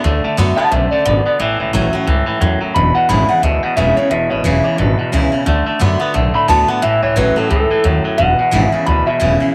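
Rockabilly at 177 BPM with a swung eighth-note feel, rowdy and retro in this short cut from a longer piece, led by a bright, slightly broken-up electric guitar through a small old amp that carries the melody with vibrato and tape echo over chords of D6, A6 and E6. Beneath it, a clean, scooped twangy electric guitar plays an up-front riff, a full-bodied steel-string dreadnought acoustic picks out the accompaniment, and a woody, thumpy upright bass with gut strings drives the low end. The whole band sits in a small room ambience and plays together from 0.0 seconds to the close.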